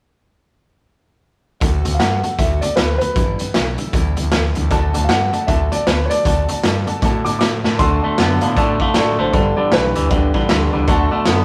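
A swung rockabilly groove at 155 BPM in D major drives this rollicking, retro excerpt, with a punchy, saturated garage drum kit up front, a thick, growling FM bass and a clean, twangy electric guitar riff all starting at 1.6 seconds, while a picked jumbo acoustic guitar plays in the background. A woody, intimate upright piano with audible action noise carries the melody from 1.9 seconds, and a detuned, jangly honky-tonk piano joins behind it at 4.7 seconds. A drum fill at 7.6 seconds ushers in a new section, all set in a rough rehearsal-room sound with a moderate stone-room reverb.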